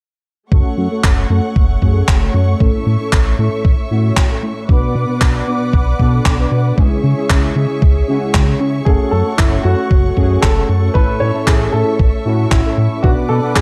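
A thumpy, sampler-style electronic kick drives this straight 4/4 italo disco piece at 115 BPM in F# minor, joined at 1.0 s by overdriven handclaps soaked in gated reverb, both carrying a small-room character. A glossy, chorused pulse-wave synth bass anchors the F#m–A–Bm–C#m progression, while fat, detuned analog brass stabs with tape echo and a lush, vibrato-rich string section holding sustained chords build a melodramatic, nostalgic mood, and a filter sweep on an analog polysynth runs throughout. At 8.8 s a warm baby grand piano enters with a melody of short-sustained notes touched by tape echo, framed by a dark production with moderate room reverb.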